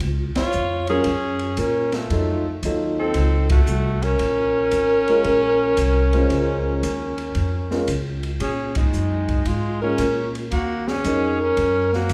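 A lush hall reverb surrounds this short cut from a longer small-group jazz performance, giving the swing-and-bop quintet a spacious, late-night cool. The upright bass sits up front, its pizzicato notes woody and thumpy, while an acoustic drum kit with dark cymbals, a high-tuned snare and a boomy kick plays hi-hat, ride, snare and kick throughout. From 0.4 seconds the alto saxophone carries the melody with a warm, vibrato-tinged jazz tone, joined at the same moment by a clear, punchy trumpet playing a lower second line with light vibrato. A concert grand piano accompanies from 0.9 seconds until 11.4 seconds, intimate and natural, with deep bass, long sustain and audible action noise. Band accents punctuate the swung groove over chords moving through Gbmaj7, F7b9, Bbm7 and Ebm7.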